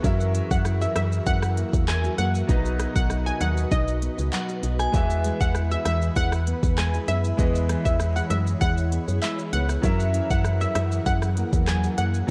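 A straight 4/4 dancehall groove at 98 BPM drives this summery, bouncy passage in E major. It is carried by an electronic afro-pop kit with a deep kick, crisp hi-hats, handclaps, rim clicks and shaker sitting up front, while tight, high-tuned bongos played with soft hands tick along very quietly from 0.0 to 12.1 seconds. A woody, round FM bass, dark, with a fast attack and a decaying tail, anchors the low end beside the drums. A fingerpicked nylon-string guitar with audible finger squeak adds dark classical arpeggios in the background, thickened by analog chorus. A clear, smooth grand piano with a vintage tone and short sustain plays accompaniment under lush chorus, and an ethereal, airy pad holds slow-blooming sustained chords with ensemble chorus and its own reverb; both of these parts pump against the sidechain. From 0.5 seconds, a detuned sawtooth pluck with a filter sweep and noise layer carries the bright lead melody through chorus and diffuse ambient delay, joined briefly by a crystalline FM bell line around 4.3 seconds. 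The chords move from F#7 to B and E before returning to F#7, and the whole excerpt, cut from a longer piece, sits in a dreamy, reverb-soaked mix laced with vinyl crackle.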